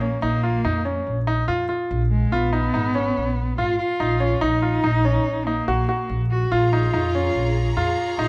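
A straight 5/4 pulse at 143 BPM drives this restless, urgent stretch of contemporary chamber music in Bb phrygian, cut from a longer piece and moving through Bbm, Db7, Ebm7/Bb and Bbm7. A nasal, boxy bowed cello carries the melody with vibrato and portamento over brilliant grand piano arpeggios, whose action noise and long sustain sit up front, while a woody, growly pizzicato upright bass anchors the low end. At 6.5 seconds an intense bowed studio string section slips in softly with sustained chords, all heard through close, detailed microphones and light reverb.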